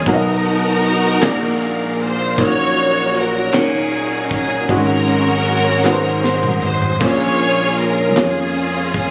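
In a slow 6/8 at 52 BPM, this uplifting, soulful gospel fragment sets an expressive bowed string section carrying the melody up front with vibrato and portamento over a woody, slightly detuned upright piano, a growly slap bass, a very quiet lightly overdriven tonewheel organ with fast rotary swirl holding chords, an airy fusion kit with a high-tuned snare and punchy kick that plays a fill from 5.9 to 7.0 seconds, and hollow, close group handclaps in the background, all set in light studio reverb with a phone-in-the-room feel as the harmony moves from Cbmaj7 through Ab7sus4 to Bbm7.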